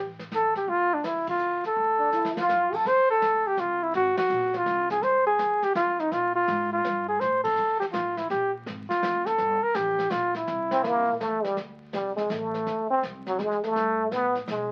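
Small-group swing and bop jazz in a cool, moody 3/4 at 165 BPM in F major, heard through the crackle of a very old 78 rpm record with light reverb, as a mellow, up-front flugelhorn carries the melody over woody pizzicato upright bass and a dark, smooth brush drum kit with a boomy kick, band accents at 1.2, 4.1 and 7.4 seconds and a drum fill near 2.1 seconds, while a brilliant, punchy plunger-muted trombone adds a wah-wah second line with light vibrato and scooped notes, then takes a forceful solo from 11.6 seconds after the flugelhorn stops at 11.2 seconds.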